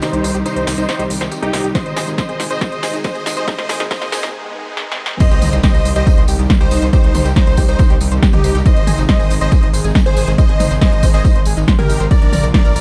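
A huge, euphoric supersaw lead carries the melody through this bittersweet, driving uplifting trance excerpt at 139 BPM in C minor, its detuned, compressed sawtooth tone pumping against the kick and trailed by tape echo through a low-pass filter. Beneath it, a gritty, saturated synth bass with tube drive and a moving notch enters at 0.1 seconds, while a lush supersaw pad holds sustained chords and a round analog pluck with subtle chorus and dub echo spins arpeggios in the background. The opening build-up carries drum fills from the techno kit, a filter sweep on the supersaw and a very quiet electronic riser, with a short break before the drop lands at 5.2 seconds with an impact. There a punchy, catchy unison lead joins as a second line, its detuned square-wave tone touched with vibrato and dub echo. The punchy, up-front electronic kick, which starts at 1.8 seconds, drives the groove alongside a punchy snare, smooth hi-hats, toms, crash cymbal and a jingly, close tambourine. 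The production is dark with little reverb, moving through Cm, Ab and Bb chords.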